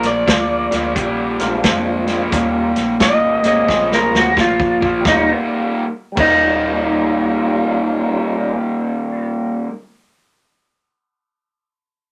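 A gritty, swaggering electric blues shuffle in Eb mixolydian opens at once at 88 BPM, with a lo-fi electric guitar through a small old amp carrying the melody in a slightly broken-up, compressed tone over a raw garage guitar riff that is overdriven, picked and up front. Beneath them, a vintage fingered bass sits low and dark, its foam-muted notes round and punchy. A vintage acoustic drum kit keeps a swung 4/4 with a punchy kick, medium-tuned snare, hi-hat and dark crash cymbals under a rolled-off top, adding a fill from 3.7 to 5.1 seconds before it stops at 6.3 seconds. A fat, percussive tonewheel organ joins at 1.4 seconds with key click, vibrato, light overdrive and a slow rotary speaker, comping through the shift between Bb7 and Eb7 chords. A moderate club reverb gives the mix a snug, live feel in this short excerpt cut from a longer piece.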